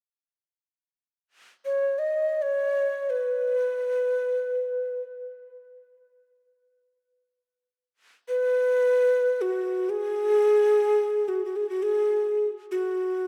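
Bathed in a lush plate reverb and an echo-heavy mix, this calm, meditative world-music fragment in free time and B major pentatonic, cut from a longer piece, features a solo Native American-style cedar flute that enters at 1.7 seconds and plays until 13.3 seconds, its breathy, hollow, woody straight tone, tongued with a chiff, sitting close and up front while tape echo trails each phrase between F#4 and D#5.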